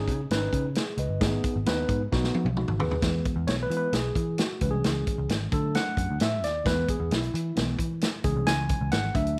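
Uplifting and warm, this short excerpt from a longer piece is uptempo 1960s-style soul in a straight four-four feel. A worn, slightly out-of-tune tine electric piano sits up front, its clean tone coming through built-in speakers, while a vintage muted picked electric bass adds a dark, round, foam-muted line underneath. The vintage acoustic drum kit is natural and forward, with a punchy kick, a medium-tuned snare, hi-hat and toms, and a rolled-off top end that keeps it warm. The opening moves through C#sus2, G#m and B, and a drum fill from 2.1 s leads into the second section, where the electric piano takes a solo from 3.0 s over E, C#m and D. Light reverb and studio ambience surround the whole band.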